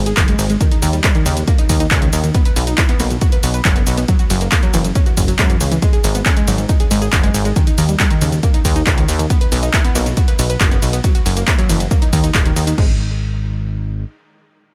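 Uplifting trance at 138 BPM in G# minor, this emotional, driving drop runs from the start to 12.8 s, with detuned, bright analog pluck arpeggios through chorus and delay and a punchy, funky sawtooth bass up front, both pumping against the sidechain. A heavy, layered electronic kick sits up front while an overdriven analog drum machine adds crash, ride, hi-hat, handclaps and shaker, both parts re-recorded in a large room. The mix is otherwise dry, and only the bass carries on to 14.0 s as the passage ends on a bare, chordless moment.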